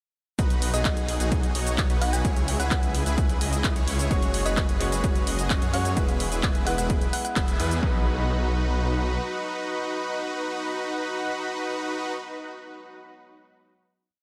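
Triumphant and uplifting, this short festival progressive house piece in B major at 129 BPM bursts straight into a drop: huge, bright detuned supersaw chords pump in a dotted rhythm over a thick, menacing saw bass, while an overdriven four-on-the-floor kick punches beneath programmed hats, cabasa and claps, and a round, tine-like FM pluck murmurs darkly in the background with chorus and tape colour; a clear grand piano enters at 4.1 s, a band accent hits at 7.4 s, and the piano rings on to 14.1 s through a final B chord, all soaked in dreamy reverb.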